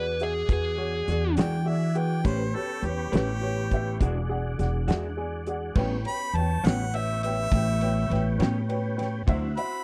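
A dry, close-miked 1970s-style studio sound with little reverb frames this short cut from a swaggering, rollicking slow blues in a straight 12/8 feel. A dark, smooth overdriven lead guitar opens with a brief picked phrase that ends at 1.3 seconds, over an acoustic drum kit with a fat snare, tight kick and dark cymbals that sits up front beside a woody, pizzicato upright bass with a bright steel-string edge. A slightly detuned upright piano with short sustain and a tonewheel organ holding smooth, clean chords through a slow rotary speaker and chorus vibrato fill in the harmony as it moves from E9 to A9. At 1.4 seconds a bright, close-miked harmonica with light vibrato and scooped notes joins, along with a slightly broken-up, lo-fi electric guitar through a small old amp that plays compressed accompaniment with harmonic tremolo from the background. From 5.8 seconds the harmonica takes a jazz-styled solo over an A9 chord, and the harmony shifts to D9 near the close.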